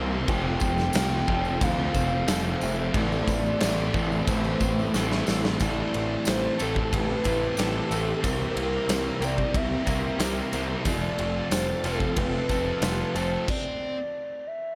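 Lightly reverberant and hazy, this melancholic shoegaze and dream pop excerpt layers a thick, chorused fuzz guitar and a dark overdriven guitar with reverse reverb behind a growling, bright bass, while a very quiet vintage string machine of cellos holds sustained chords and a faint direct-recorded clean guitar picks arpeggios. A hollow, woody clarinet-like synth lead carries the melody with vibrato and analog delay over a big-room rock drum kit with a punchy kick, a drum fill at 4.9 s leading into the next section, and a jingly tambourine in the background. The band stops at 13.5 s, while the fuzz guitar lingers until 14.0 s and the lead rings out until 14.8 s.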